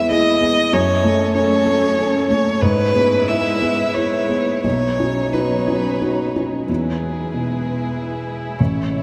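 A single bowed violin carries the melody, its smooth, even tone shaded with vibrato and sitting up front in the mix. Beneath it, a felt-muted upright piano plays a mellow, intimate accompaniment, close enough that the soft clicks of its action can be heard. A chamber string section holds focused, sustained chords in the background, adding a rich vibrato glow. This neoclassical excerpt in E major moves in a rubato 3/4 at roughly 85-97 BPM, with the harmony passing through E, F#m, E/G# and Badd9 before a new section returns to E at 6.7 seconds. A long cathedral reverb places the ensemble in a vast, echoing space, giving the hopeful, intimate mood a spacious air.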